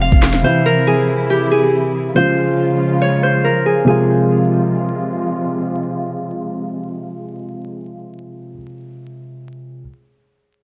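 This menacing hip hop fragment moves at 140 BPM in a half-time feel, in F harmonic minor and tuned slightly below standard pitch. A bright, fingerpicked Celtic harp carries the ringing melody up front, softened by a low-pass filter and trailed by tape echo, until it drops out at 6.1 seconds. A dark concert grand piano plays the accompaniment beneath it, mellow and intimate with deep bass and audible action noise that gives it a vintage character. It continues until the close at 9.8 seconds. Muted, con sordino strings add veiled, bowed ensemble chords with light vibrato, and low-pass filtering softens their symphonic weight. A filter sweep colors the opening as the harmony moves from C to Db and settles on F minor at 3.9 seconds, all set in a light studio reverb with vinyl crackle that deepens the ominous mood.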